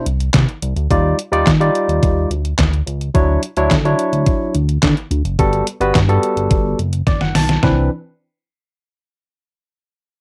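A barky, lightly overdriven tine electric piano opens this feel-good, danceable early-eighties boogie funk excerpt at 107 BPM, soon joined by a glossy, dark chorused synth bass and a detuned, thumpy 8-bit drum machine with handclaps and a snare, all up front with light reverb on a cassette home recording, as lush major-ninth chords pass from Ebmaj9 to Gmaj9 before an electric piano fill at 6.8 seconds and a drum fill at 7.1 seconds lead into a new section.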